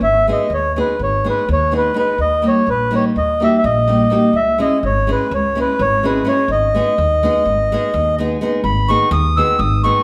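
A mellow, reedy accordion and a woody, thumpy upright bass open this fiery, virtuosic slice of Balkan wedding-band folk, with fingerpicked nylon-string guitar joining at 0.3 seconds. The tune moves in a straight 9/8 at 251 eighth-note beats per minute, set in G# harmonic minor and tuned to A4 = 436 Hz. The accordion carries the melody up front, its round, single-reed tone chamber sound sitting well above the band, while the pizzicato gut-string bass holds down a dark low end. The guitar's fresh strings give a small, intimate accompaniment close to the ear. Chords pass from G#m through D# and C#m before returning to G#m, and a new section arrives at 8.6 seconds, just before this cut from a longer piece ends. The players share one room, bathed in a wet reverb from a large studio space.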